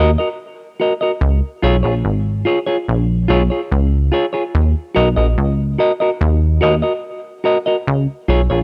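A straight 4/4 pulse at 72 BPM sets a slow, hypnotic roots reggae groove in Eb minor, heard in a short cut taken from a longer piece. A plucky analog bass sits up front and a little louder than the guitar, its punchy, funky tone built from sawtooth and square waves with a fast attack and a decaying filter pluck, holding the low register between Ab1 and Eb2. A semi-hollow electric guitar supplies the accompaniment, dark and clean with a fingered, hollow-body character, placed up front in a range from F4 to Eb5 and trailed by tape echo. The harmony moves between Ebm and Db, with the change to Db arriving at 1.2 seconds and Ebm returning at 4.5 seconds. Both parts play throughout the 8.6 seconds, and light reverb gives the meditative mood a gentle sense of space.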